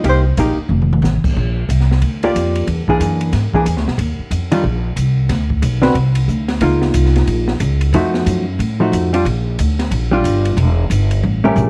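Small-group swing and bop jazz in Bb major at 182 BPM, warm and sophisticated, cut from a longer piece, with a swung 4/4 feel and light reverb giving small room ambience. A dark, clean, compressed hollow-body guitar sits up front comping through chords such as Cm7, E7#11, Db69 and F7b9, beside a woody, thumpy pizzicato upright bass, while an open jazz drum kit with dark cymbals, a high-tuned snare and a boomy kick plays further back. Brief drum fills land at 0.7 s and again at 11.2 s.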